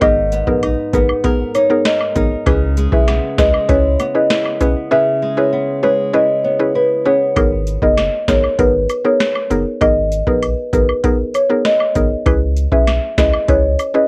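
A booming analog drum machine drives this bouncy, tough dancehall groove at 98 BPM in G# minor, its deep kick, crisp snare, metallic hats and rim click sitting up front over a punchy sine sub bass with a pitch-drop attack, while close woodblock and cabasa add tube-shaker and group-handclap texture. A mellow soft-mallet marimba carries the melody over a woody, round FM synth pluck with chorus, and a bright fingerpicked flamenco guitar with finger squeak and analog delay spins arpeggios until it stops at 7.9 seconds. The chords move between G#madd9 and C#m7 across two matching passages, and the marimba, synth pluck, guitar and drums carry a hazy cassette-tape tint within a light reverb and a home-recorded cassette feel.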